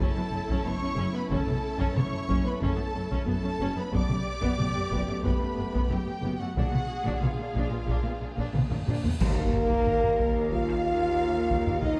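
A dark production with moderate scoring-stage reverb frames this epic, heroic orchestral film cue at 91 BPM in 4/4, cut from a longer piece. A warm violin section carries the melody over a second, lush violin line, a hollow and very quiet flute ensemble, violas, and mellow French horn chords, with intense cellos and distant double basses in the background, all moving through A/F#, Gadd9/F# and A#7. Compressed, saturated taiko drums play throughout, and bright clash cymbals, a cymbal swell and concert bass drum join at 6.6 s. A huge swell rises from 8.3 s into an impact at 9.2 s, where a band accent brings in round, soft-mallet timpani on an Ebsus2 chord.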